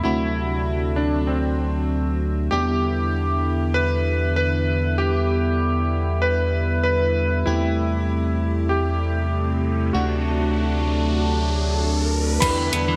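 Synthwave at 97 BPM in E minor, cinematic and moody, where an up-front electric grand piano with a clangy vintage tone carries the melody over a smooth, warbling analog pad that pumps under a filter sweep, dreamy FM electric piano stabs with chorus and phaser, and a glossy, dark chorused synth bass, while a riser climbs from 9.0 s until 12.4 s, when a clean picked electric guitar riff, a thumpy overdriven kick and an overdriven 12-bit drum machine crash and hi-hat arrive on Em7 as this excerpt from a longer piece cuts off, all set in a lush hall reverb with bright 1980s-style digital production.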